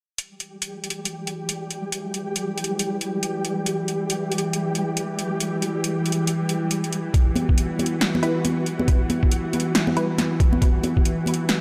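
A punchy deep house kit with metallic hats and an overdriven snare opens this meditative, heavy deep dubstep excerpt in E minor at 138 BPM, with a half-time, swung feel. It is soon joined by a flickering, grainy granular texture and then a tense, string-like bowed drone with phaser and vibrato, all set in a lush hall. At 7.1 s a gritty, pitched-down, up-front kick arrives, followed by bright, close and dry congas with dub echo. At 8.2 s a muted, mellow filtered dub chord stab adds brief plucks treated with chorus and echo.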